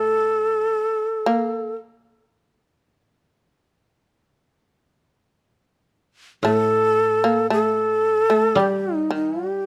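Japanese traditional chamber music in a free, rubato 4/4, austere and meditative, in which a breathy, up-front bamboo shakuhachi carries the melody with vibrato over a buzzing, percussive plectrum-plucked shamisen second line and a mellow, woody koto accompaniment, all three sounding together throughout this short cut from a longer piece and captured by close, detailed microphones in a dry room.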